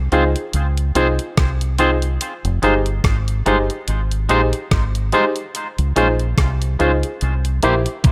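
Lovers rock reggae with a smooth, longing mood, this short passage is cut from a longer piece and rides a gentle swing on the sixteenths. A deep, round dub bass, fingered and dark with a direct amped tone, sits up front from the opening moment. It shares the foreground with a clean 12-bit drum machine of sampler-style hits: a thumpy kick, hi-hat, rim click and toms. A concert grand piano fills in the accompaniment with an intimate, natural sound where the action noise can be heard. A twangy, clean electric guitar plays fingered stabs trailed by dub echo. Light digital ambience surrounds the parts as the harmony moves from Dbmaj7 to Fm7 and back, landing on C7 at 7.2 seconds.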